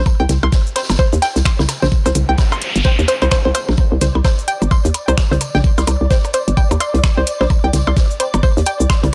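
A dry, gritty hardware sound frames this quirky, hypnotic minimal techno excerpt, swung on the sixteenths. Up front, a knocking electronic kick sits beside a hollow, bouncy, sidechain-pumped FM bass. A detuned square-wave pluck riff with chorus and tape echo, tape-warm electronic percussion blips and toms, a garage drum kit of metallic hats, finger snaps and shaker, and a soft-mallet kit of hi-hat, fat snare and tambourine fill out the groove; an electronic noise sweep passes from 2.2 to 3.8 seconds, and a flickering, granular texture enters at 4.1 seconds with a slow attack in the background.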